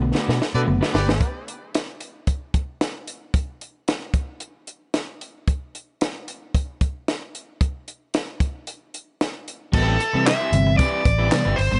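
Funk excerpt at 113 BPM in A dorian with a funky, cool mood, where a dry, compact cocktail drum kit with dark cymbals, a high-tuned snare, handclaps and a punchy kick plays a fill from 0.1 to 1.2 seconds and then carries the long stretch from 1.2 to 9.7 seconds. That stretch is framed by brief passages of crunchy, bright guitar, mellow tine electric piano stabs through built-in speakers, a round, foam-muted vintage bass up front and a short burst of a clear, punchy horn section with tape echo. At 9.7 seconds a nasal, overdriven lead guitar with a parked wah takes the melody over an Am9 chord in a small room.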